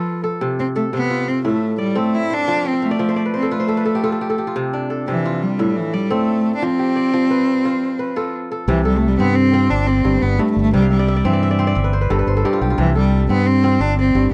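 A steady 12/8 pulse at 116 BPM drives this flowing, hypnotic excerpt of West African string and xylophone music in C major, where a biting, nasal bowed cello with vibrato carries the melody over ringing, crisp fingerpicked kora arpeggios with fills at 2.5 and 10.8 seconds, and a growly, direct fingered electric bass joins them at 8.7 seconds for the second section, all captured in a dry, close small-room sound.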